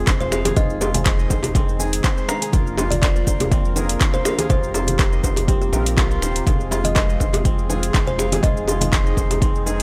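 A soft, detuned analog pad, crisp ringing kora arpeggios with 12-bit sampler grit and analog delay, dark chorused synth brass stabs and a round, nasal analog bass, those last three pumping with sidechain, open this driving, hypnotic afro house excerpt at 122 BPM in F dorian, joined at 0.1 s by a deep electronic kick, metallic hi-hats with finger snaps, handclaps and shaker, and tight high-tuned bongos, then at 0.2 s by a woody, hollow kalimba melody with analog delay and background congas, all moving over Fm, Bb/F and Eb6/F chords in a dry, gritty small room.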